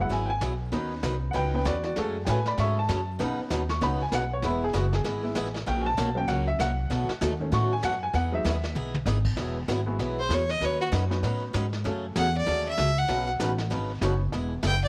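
Cheerful, playful western swing country at a brisk 194 BPM in E major with swung eighths, this cut from a longer piece opens on a clear, woody upright piano solo over pizzicato upright bass, bright, boxy picked acoustic guitar with finger squeak, and a vintage brush drum kit with dark cymbals and a punchy kick, whose short fill at 8.8 seconds leads to an intense, up-front bowed fiddle with light vibrato that enters at 10.2 seconds, set in light reverb.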